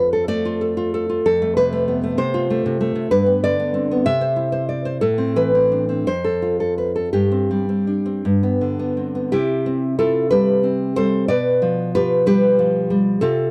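Tender and warm, this short romantic fragment for solo classical guitar unfolds in a lilting 6/8 with a flexible, rubato feel, drawn from a longer piece. The fingerpicked nylon-string guitar sits up front with a fresh-stringed warmth, moving through a gentle progression of F, G, C and A minor before settling on C at 9.3 seconds as a new phrase begins. The dry, close 1970s-style studio sound keeps every note intimate and present.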